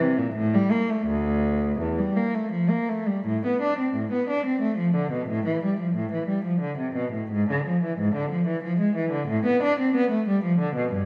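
This is a classical, baroque-style suite movement for unaccompanied cello, a short passage cut from a longer piece that runs about 11.1 seconds. The mood is introspective and solemn, moving in 3/4 at roughly 78-93 BPM with a rubato feel that lets the pulse breathe. A single bowed cello, tuned to A4 = 439 Hz, carries everything from D2 up to D4, its tone warm and focused with a smooth top and vibrato. The music begins in D minor and shifts to A minor from 3.3 s, where the opening idea returns in the new key. The instrument sits up front in a reverberant stone room whose 1.3-second decay adds a grave, spacious glow.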